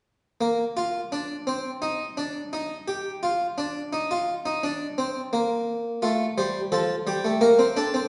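A solo harpsichord opens at 0.4 seconds, the start of a stately, joyful baroque-style three-part fugue in 4/4 at 86 BPM, cut from a longer piece. The plucked, brilliant Italian-style instrument with octave strings sits up front, moving between F3 and C5 as harmony settles on F at 6.0 seconds and Bb at 7.4 seconds before stopping at 8.1 seconds. A wet recital hall reverb places the listener further back in the room, and nothing sounds above 10.7 kHz.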